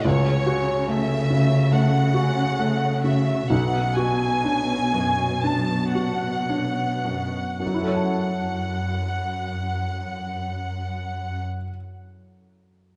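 Bittersweet and longing, this cinematic, emotional film score excerpt in F# minor drifts in a rubato 4/4 at 53-73 BPM, slowing through its opening 7.6 seconds as a vibrato-rich, up-front violin section carries the melody over a felt-muted upright piano with audible action noise, a bright, ringing concert harp set back in the mix, and a lush, focused cello section holding the bass, all bathed in a wet scoring-stage reverb before the piano alone lingers until 13.0 seconds.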